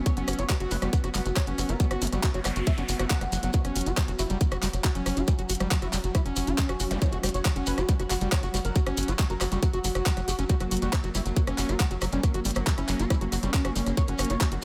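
A hypnotic, psychedelic trance excerpt at 138 BPM in F# major opens with a tight, overdriven electronic kick pushed up front, alongside an overdriven garage kit of handclaps, hi-hat and rim click, a grainy shekere in the background, and a punchy, nasal sequencer bass driving low around F#1. Over this, a squelchy, screaming distorted acid riff with resonant filter sweeps, chorus and analog delay runs beside a thick, bold, detuned unison lead melody with vibrato, phaser and delay, while a soft-attack gated pad pulses sustained chords in the background, the chords, acid line and lead all pumping to the kick. A very quiet noise sweep enters at 2.3 seconds, with a brief zap at 6.9 seconds, all within light reverb.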